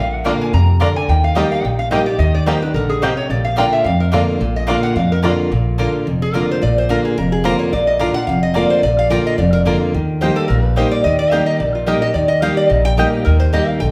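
A nasal, metallic lap resonator guitar played with a steel bar and fingerpicks is featured in this rustic, virtuosic bluegrass excerpt in Bb major at a swung 217 BPM, first as a bright second line up front beside a twangy banjo melody in the background and then, warmer in tone, taking the melody itself from 6.2 seconds, over a picked dreadnought acoustic guitar, a thumpy, woody pizzicato upright bass and picked mandolin stabs, all captured as a band playing live in one room with a lush large-studio reverb.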